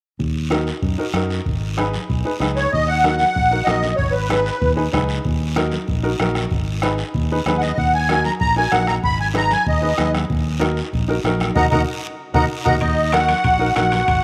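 Cumbia at 190 BPM in Eb minor, danceable and driving, with a raspy guiro, soft-beater bombo, very quiet ringing congas and a clear, slightly detuned upright piano alongside a warm fingered electric bass, while a reedy, shimmering musette accordion carries the melody up front from 2.6 seconds, and after a band accent and drum fill a distant trumpet with slapback echo and very quiet metal-shell timbales join at 12.8 seconds, all in a moderate echo-chamber reverb.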